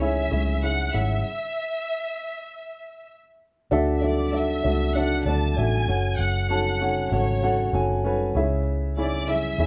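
Recorded as a band playing live in one room with moderate studio reverb, this short cut from a longer piano-driven pop piece feels earnest and bittersweet at 97 BPM in a straight 4/4. A dark, woody upright piano sits up front with a mellow, boxy tone, carrying the accompaniment across a span from C#3 to A5. Beneath it, a vintage fingered electric bass gives a round, foam-muted, amped low end between F#1 and E2. A distant, lush violin section carries the melody with vibrato, portamento and soft bowed attacks, lending an expressive ensemble sheen to the top. After an opening C#m chord, a chordless stop runs from 1.2 to 3.7 s, and the harmony then moves through Dadd9 and F#m before returning to C#m at 8.3 s.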